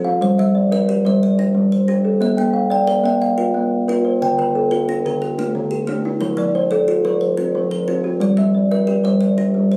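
Warm and hypnotic, this excerpt of a southern African traditional mbira-style interlocking cycle moves at 120 BPM in a straight 12/8, in G equiheptatonic tuning with A4 at 441 Hz, cycling through Gm, Bb, Dm and F before returning to Gm. Two kalimbas play arpeggios from D3 to G5 throughout: the louder one sits up front with a dark, smooth, woody thumb-plucked tone, while the quieter one adds a bright, ringing thumbnail pluck with a hollow-box resonance. Captured on a phone in a moderate small room, the sound carries added studio reverb and compression.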